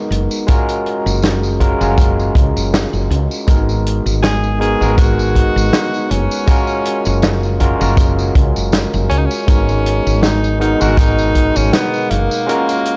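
Lightly swung at 80 BPM in 4/4, this woozy, dreamy vaporwave excerpt rides a punchy, rolled-off kick, a vintage kit of hi-hat, medium-tuned snare and tambourine, and a dark, round fretless bass, while a barky, overdriven tine electric piano with lush chorus alternates F#maj9 and G#m9 throughout; a clear jazz tenor saxophone with light vibrato and scooped notes enters at 4.2 seconds, coloured by 12-bit sampler grit and tape echo, in a dry recording with a cassette-tape tint.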